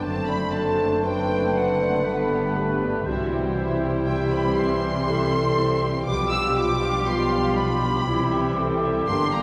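A wet recital-hall reverb surrounds this solemn, elegiac slow romantic movement for symphony orchestra, a 9.4-second excerpt in G major at 60 BPM in a rubato 3/4, moving from D7/F# through G and C to G7/B and back to C. Close, veiled con sordino violins carry the melody, with a distant mellow oboe, a pure silver flute, a warm clarinet and a second muted violin line weaving secondary parts, while a roomy bassoon and very quiet dark violas accompany. Present French horns and brilliant, tight trombones hold sustained chords over a lush bass of muted cellos and smooth-topped double basses, every part sounding throughout.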